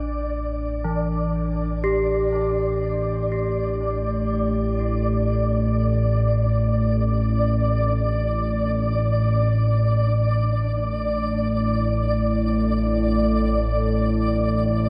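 Awash in a huge, wet reverb with an eight-second tail, this vast, ominous dark ambient drone drifts in free time, cut from a longer piece. An up-front analog drone, warbling and vintage with chorus, holds low under a filter sweep for the full 14.9 seconds, while a flickering, grainy texture, detuned and mellow, hovers high above through shimmer reverb. A dark, ringing bronze metallophone plays arpeggios through delay and shimmer reverb, falling silent at 7.7 seconds.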